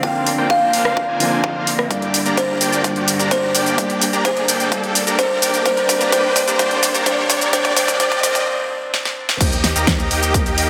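A buzzing, woody kalimba melody with dub echo opens this triumphant festival progressive house excerpt alongside a muted, boxy upright piano, a rich bowed string section in the background under a low-pass filter sweep, a huge, detuned supersaw riff, all three of these last parts pumping with the sidechain, and a punchy, layered electronic kick, while an up-front pop kit with fat snare, hi-hat, rim click, shaker and crash drives an anthemic build-up with fills and a background riser from 0.9 seconds, carrying on through a brief break before the drop at 9.4 seconds brings in a deep, saturated sine sub bass.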